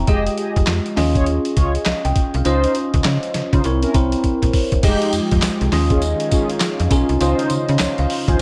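A swung sixteenth-note groove at 101 BPM in 4/4 drives this short new jack swing cut, an R&B piece in F minor with a confident, punchy mood. Up front, a gritty, compressed sampler-style drum kit with a thumpy kick, medium-tuned snare, handclaps, hi-hat, tambourine and crash cymbal sits alongside a snappy FM bass with a metallic attack and decaying notes. A bell-like tine electric piano, bright and clean with a phaser, plays the accompaniment, while mellow synth brass with chorus and vibrato adds round, dark stabs from 0.1 seconds. The chords move from Fm9 through Eb9sus4 and Dbmaj9 to C7b9, and a drum fill at 4.2 seconds leads into a second section where the progression restarts. At 4.8 seconds a lush, warbling unison pad with chorus enters in the background, thickening the sound with vintage, full-bodied sustained chords, all under a light reverb.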